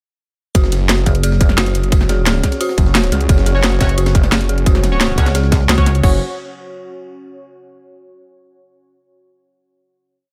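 A dry, close and loud mix opens this short, complete piece of dark, technical drum and bass, tense and aggressive at 175 BPM in a straight 4/4, tuned slightly flat to A4 = 438 Hz. From 0.5 seconds the drop hits on an F#5 chord, driven by a tight, overdriven electronic kick and an up-front drum and bass kit with a cracking snare, bright hats and crashes, while a very quiet, gritty, looped breakbeat with edits and a high-tuned snare sits beneath. A snarling, growling sawtooth bass with tube saturation and distortion carves out chopped phrases in the low register, answered from 1.1 seconds by a heavy, pulsing pluck wobble bass whose modulated phrases change wobble speed. An eerie, inharmonic FM bell repeats a six-step arpeggio loop that drifts against the bar, pumping with the kick and trailing dub echo, and from 1.9 seconds a deep, moody ambient pad breathes slow, sustained chords in the background. 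Sparse, nasal band-passed chord stabs enter at 3.5 seconds, one shape moved in parallel through phaser and echo, before the piece settles onto a final chord.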